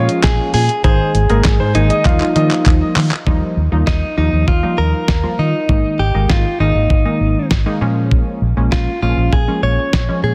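A bright, wistful synth-pop excerpt at 99 BPM in Eb mixolydian opens with a clean, picked electric guitar melody with digital delay, a polished grand piano second line that drops out at 2.5 seconds, a chorused sawtooth polysynth comp with a filter sweep, and a round, foam-muted fingered bass, while a 12-bit drum machine with thumpy kick, fat snare, hi-hat and handclaps sits up front and plays a fill from 2.1 seconds into a second section over chords moving through Bbm7, Absus2 and Ebadd9 in a dense, heavily limited mix with light reverb.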